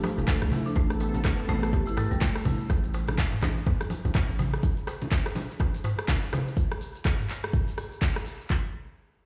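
Hypnotic and spiritual, this afro house drop opens on a soft, detuned analog pad with chorus holding sustained chords and on woody rosewood marimba arpeggios with delay, both pumping against the sidechain and stopping by 2.7 seconds. Electronic drums carry the groove, with a deep, up-front kick and handclaps alongside crisp hats, rim clicks, shaker and toms, while bright, damped congas and a clay-shelled darbuka sit in the background. A boomy, sine-like 808-style bass pumps from 0.2 to 4.6 seconds, and the whole mix rings with a large studio reverb, as if played on a big sound system in a bare room.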